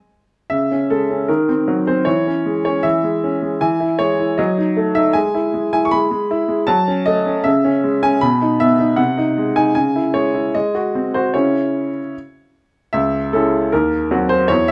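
A bright baby grand piano carries this short classical-period sonatina on its own, its brilliant tone sitting up front with long, natural sustain under a light reverb. The piece is in C# minor at a gentle 77 BPM in 2/4 with a straight feel, and the mood is playful and graceful. The piano spans from C#2 up to C#6, starting at 0.5 seconds on a C# minor chord and moving through diminished colours, an E major chord, F# minor and B before a G#7 leads firmly back home. At 12.9 seconds the opening material returns, reaching a diminished chord just before the fragment breaks off at 14.7 seconds, clearly cut from a longer piece.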